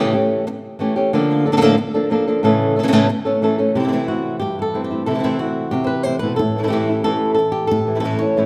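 A moderate concert-hall reverb surrounds this intense, dramatic flamenco fragment at 182 BPM in A phrygian dominant, where an up-front fingerpicked acoustic guitar with warm, fresh strings carries the melody from the start over chords moving from A7 through Bb to A, and a second warm fingerpicked guitar joins with stabs at 3.8 seconds as the harmony shifts to C6 before settling back on A.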